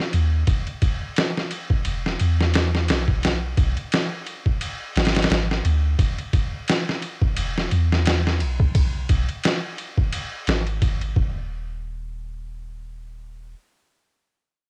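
Melancholic and brooding, this short trip hop excerpt with a 16th-note swing pairs a gritty, pitched-down sampler-style drum kit of thumpy kick, medium-tuned snare and ride cymbal, compressed and up front with cassette-tape coloring until 11.3 seconds, with a deep, round, sine-like 808-style bass whose fast attack decays into darkness as it carries on to 13.5 seconds, all in a dry home recording on cassette.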